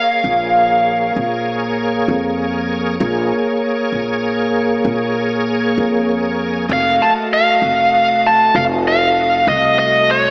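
A biting, overdriven lead guitar and a shouting tonewheel organ with slow rotary speaker and chorus vibrato open this mournful, brooding slow blues in Bb minor at 65 BPM in 12/8, joined at 0.2 seconds by a woody, growly pizzicato upright bass under sustained Bbm7 chords, before the guitar returns at 6.7 seconds over an F7b9, all soaked in a lush hall reverb with a dreamy, small-speaker sound.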